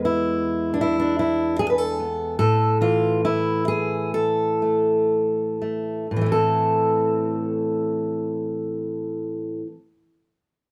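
Melancholic and wistful, this short fragment of a longer solo folk piece features a fingerpicked steel-string acoustic guitar in A harmonic minor, played with a rubato feel that drifts between 58 and 80 BPM and slows down through the first 6.1 seconds. The guitar sounds bright and up front, its fresh strings caught by close, detailed microphones in a nearly dry space, moving from E7 to A5 before settling on A minor at 6.1 seconds as the second section begins. The guitar falls silent at 9.8 seconds.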